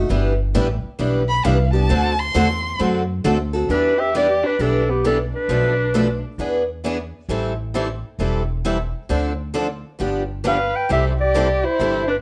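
Acoustic string swing in the jazz manouche style at 133 BPM in E minor, swinging and virtuosic, where two bright, boxy, picked steel-string parlour guitars and a woody, thumpy, pizzicato upright bass play the accompaniment, a bowed violin with vibrato and portamento takes an expressive solo from 1.3 s, and a close-miked, up-front clarinet with subtone and scooped notes carries the melody from 3.7 s, set in light reverb in this fragment cut from a longer piece.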